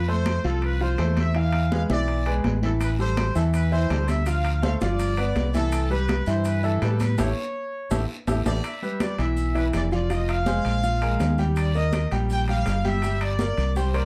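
Salsa at 164 BPM in 4/4, festive and danceable, with a round, punchy fingered electric bass up front beneath a tight, distant trumpet section carrying the melody and a brilliant baby grand piano comping with long sustain over chords moving from Fmaj7 through E7b9 and Am7. Ringing high-tuned congas and metal-shell timbales sit in the background with a raspy, saturated guiro, and grainy, mellow maracas join at 2.8 s. A drum fill and band accent from 7.2 s lead into a new section at 8.6 s that shifts through Em, Fm and Ebadd9 in this dark, moderately roomy excerpt cut from a longer piece.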